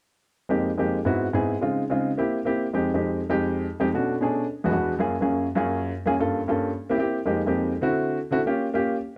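A dry, close recording in a small room with a 1970s studio character puts a baby grand piano up front, intimate and natural, its short sustain and audible action noise clearly heard. This fiery, driving jazz fragment in F minor, cut from a longer piece, runs at a brisk 213 BPM in a straight 4/4, with the piano playing solo from 0.5 to 9.0 seconds across a range of E2 to A4. Rich harmony moves quickly from Fm11 through an altered dominant and major ninth chords such as Dbmaj9 and Gbmaj9, with a second section starting at 2.7 seconds and turning through Bm7, E9 and D7 before landing on Gm7b5.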